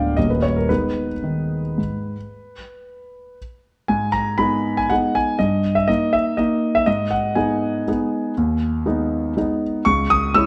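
A dark, intimate recording places a concert grand piano up front in a moderate large-studio reverb, its deep bass and audible action noise giving the sound a natural closeness. This short portion of a longer classical piano waltz in G# minor moves in 3/4 with a rubato feel at around 109-127 BPM, nostalgic and elegant in mood. The solo piano spans a broad range and passes through a D#/G chord at 5.4 seconds before touching C#m near 9.9 seconds.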